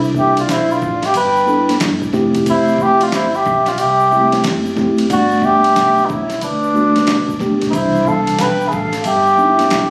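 Jazz-hop with a smooth, cool mood, this short cut from a longer piece rides a swung 91 BPM groove in C major, moving through Cmaj9, Fmaj9 and Gmaj9 before settling back on Cmaj9 at 7.7 seconds. A mellow tine electric piano carries the chords with a clean, direct sound, while a pizzicato upright bass, woody and dark with steel strings, sits low underneath. A dusty sampler-style drum kit enters at 0.1 seconds, gritty and compressed, with a thumpy kick, medium-tuned snare, hi-hat and ride, and egg shaker and congas ring in the background with hard hands. Up front, a cup-muted trumpet takes the melody from 0.2 seconds, soft and veiled with light vibrato and a close-miked, breathy jazz tone. Behind it a distant, hollow metal flute plays a straight-toned second line touched by slapback echo, and the whole mix has the compressed club-reverb feel of a phone recording made in the room.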